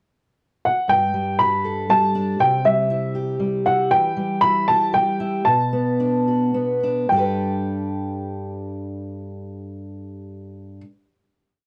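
A 3/4 lilt at 105-119 BPM, easing back between 3.9 and 7.1 s, carries this hopeful, warm little acoustic folk piece in G major, where a dark, woody upright piano with a vintage cassette tint sings a motif-based melody up front from 0.7 s while a bright, fresh-stringed fingerpicked steel-string guitar rolls arpeggios beneath it through Gadd9, C, Em and Bm7 before settling on a final Gadd9 at 7.1 s, all in a moderate booth ambience.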